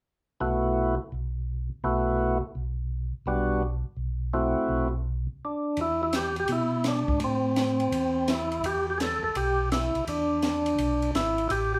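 Soul jazz organ trio in E minor, a soulful, bluesy passage cut from a longer piece, swinging at 168 BPM in 4/4. A percussive tonewheel organ with key click and second-harmonic percussion carries the melody over a mellow, round tonewheel organ bass with chorus vibrato, both up front through slow rotary speakers, while a compact cocktail drum kit with a punchy kick, high-tuned snare and dark cymbals joins at 5.8 seconds after a brief stop. The trio sits a little back in a wet club reverb, moving from suspended and half-diminished harmony into plainer minor chords.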